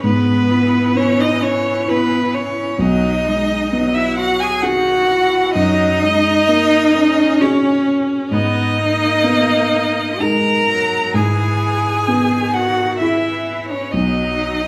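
Melancholic and longing, this rubato neoclassical excerpt in 3/4 at 65 BPM sets a rich, vibrato-laden solo violin melody over a focused cello second line, a smooth, clear viola accompaniment and a soft, boxy felt-muted upright piano, all bathed in the wet reverb of a recital hall as the chords drift from E/G# through F#add9 and G#m to close on B.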